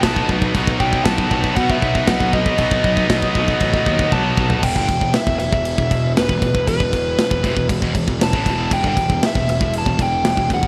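A straight 4/4 pulse at 118 BPM drives this epic, relentless heavy metal passage in E minor, cut from a longer piece. The tight acoustic drum kit sits up front with a tight kick, a medium-tuned snare, crashes and toms, all wrapped in gated reverb, and it plays a fill from 4.1 to 4.6 seconds. A high-gain distorted guitar grinds out a riff in the background throughout. A second, tighter distorted guitar adds its own riffing only until 4.6 seconds, when the harmony moves from B to E minor. Beneath them, a fuzzy picked electric bass adds overdriven weight in the low register, while a dark, smooth lead guitar with overdrive and delay carries the melody between B4 and A5. The bright 1980s-style digital production adds a light studio reverb.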